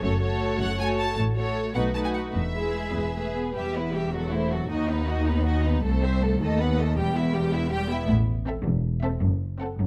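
Spirited and cheerful, this quick classical-period movement for string orchestra moves at 105 BPM in 6/8 with a rubato feel, opening in E major before turning to E minor at 3.6 s. Bowed violins carry the melody from 0.6 s with a focused, vibrato-rich tone, while a second violin line with a smooth top and violas with a close, lush sound fill in the harmony. Cellos and an up-front double bass section anchor the bass with an even, vibrato-laden depth, all captured by close, detailed microphones with light reverb.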